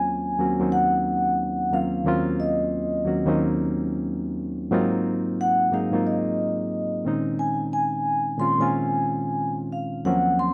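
Late-night and introspective, this 90 BPM R&B fragment in Eb dorian swings its 16ths gently as a mellow, airy vibraphone played with soft mallets carries the melody up front with a ringing shimmer and slow motor vibrato, while a reedy, barky electric piano, lightly overdriven through its built-in speakers and also up front, supplies the accompaniment across Ebm7, Ab9 and Bbm11 chords, all set in a moderate studio reverb.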